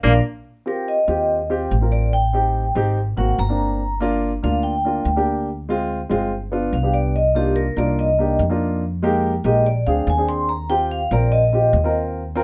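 A brief band accent opens this sunny, lively jazz fragment before a bright, ringing vibraphone played with medium hard mallets and a medium motor vibrato takes a solo from 0.5 seconds, stopping at 11.9 seconds, over a dark, mellow grand piano and a woody pizzicato upright bass, both up front, in light reverb.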